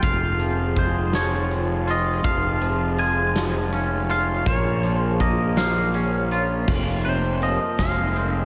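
This cathartic, melancholic post-rock excerpt opens with the full band at once, moving slowly in F minor at 54 BPM in a straight 6/8. A twangy electric guitar carries the melody, its clean, picked tone trailed by delay, while a second, brighter guitar plays arpeggios shimmering with lush chorus and delay. Beneath them, a fuzzy, overdriven fingered bass sits up front, and a huge arena drum kit, with a punchy kick, medium-tuned snare, hi-hat and crash, rings out in a big, natural room. In the background, a cloudy granular pad holds sustained chords, blurred and evolving with slow attack and its own built-in reverb. The harmony moves from Fm through Db/F and Bbm, returning to Fm at 6.7 seconds as a new section begins, with the whole mix soaked in a dreamy hall reverb.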